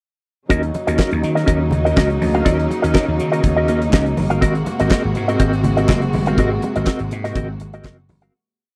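Disco at 122 BPM in E-flat dorian, a short, danceable and sultry groove that moves from Ebm7 to Ab9 and fades out from 6.4 seconds. A damped 70s kit drives a four-on-the-floor beat with tight kick, sixteenth-note hi-hat and a fat snare layered with handclaps, while a growly, punchy vintage slap bass plays a syncopated line with chromatic approach notes. Above them, a dark, compressed electric guitar with envelope filter and tremolo chops sixteenth notes, a lush, bowed studio string section holds sustained chords with vibrato, and very quiet, low-tuned congas ring underneath, all in a dry, close 1970s-style studio sound with light reverb.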